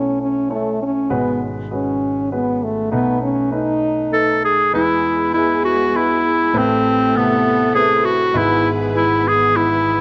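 A clear, punchy clarinet carries the melody in this nostalgic, tender acoustic folk-pop ballad, entering at 4.1 seconds and sitting up front in a classical style. It is a short section cut from a longer piece, in E major at 100 BPM in a straight 3/4. The opening belongs to a mellow French horn solo with light vibrato and a smooth top, playing a classical second line over a concert grand piano whose warm accompaniment reaches down into deep bass. At 4.7 seconds the music moves into a new section on an E chord, and a dark chamber string section joins in the background with bowed, sul tasto sustained chords, a soft attack and light vibrato, sounding intimate and close. The harmony moves from B9sus4 through G#m7 and B7 before settling into E, Amadd9 and E/G#, all framed by a moderate plate reverb.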